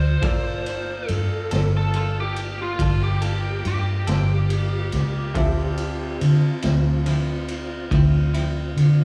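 A biting, overdriven lead guitar solo with slapback echo opens this mournful, brooding slow blues fragment in 12/8 at 47 BPM, moving from Gm9 to Dm9 at 5.4 seconds over a brilliant, woody upright piano with audible action noise, a mellow, flute-like tonewheel organ turning on a slow rotary speaker with chorus vibrato, and a dark, round, foam-muted fingered bass up front; at 0.2 seconds a compressed clean electric guitar with tremolo and a gritty, saturated garage drum kit with a high-tuned snare, punchy kick and ride cymbal join in, and the lead falls silent at 6.2 seconds, all heard as a live club gig through the venue's PA with little reverb.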